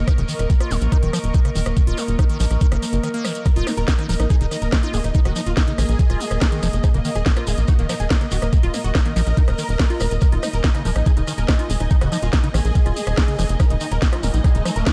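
A knocking, tape-warm electronic kick drives this hypnotic psychedelic trance excerpt at 142 BPM, joined by a tight, saturated sequencer bass, a squelchy phased acid bass riff with delay, a garage kit of cracking snare, metallic hats and rim clicks, a grainy shekere, a pumping airy breathy pad, and an evolving wavetable pad pumping in the background, until a huge detuned supersaw melody with tape echo enters after a brief break at 3.5 seconds and a riser rises in at 14.2 seconds, all in a dark, dry production.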